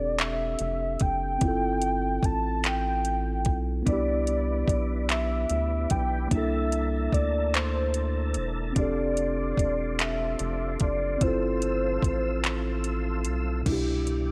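A velvety, detuned synth lead with chorus carries the melody in this tender, slow six-eight R&B excerpt, over mellow tine electric piano, a rubbery, hollow square bass and an up-front electronic drum kit with soft kick, metallic hats, handclaps and crash cymbal, while a smooth tonewheel organ with chorus vibrato and slow rotary speaker joins on sustained chords at 3.9 s, the whole set in light reverb, before a break at 12.4 s in which the lead stops at 12.9 s.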